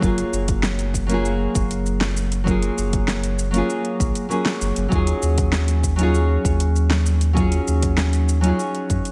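A dark, full-bodied fingerpicked nylon-string guitar sits up front with analog delay, moving from F#maj9 to D#m11 at 4.9 seconds in this blissful, relaxed sunset chillout excerpt. Beneath it, a round, sine-like sub bass holds mellow sustained notes, while a deep electronic kick and a layered deep house kit with a fat snare, metallic hi-hats and shaker keep a straight, easy groove. The drums carry a tape-like warmth, and light reverb with digital ambience gives the piece a gentle sense of space.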